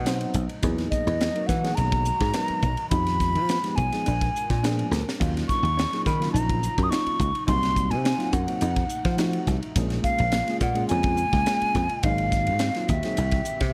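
Funky and soaring, this short passage of electric jazz fusion moves at 105 BPM in a straight 4/4, cut from a longer piece and set in a light, small-room reverb. A pure, hollow concert flute carries the melody up front between D#5 and Eb6, its tongued notes shaded with vibrato and heard close-miked. Beneath it, a bright, foam-muted slap bass thumbs out punchy, direct lines, while a polished acoustic drum kit with a high-tuned snare and a punchy kick drives from the front, marking a fill at 4.9 seconds. A clean tine electric piano opens with a brief fill and then accompanies, a dark, compressed electric guitar adds very quiet fingered stabs, and a breathy, detuned pad with chorus holds soft, slow-blooming chords underneath. The harmony travels through rich altered chords, from Cb7b9 and Emaj9#11 through Fm7b5, Ebm9 and Bbm7, landing on C7 at 13.2 seconds.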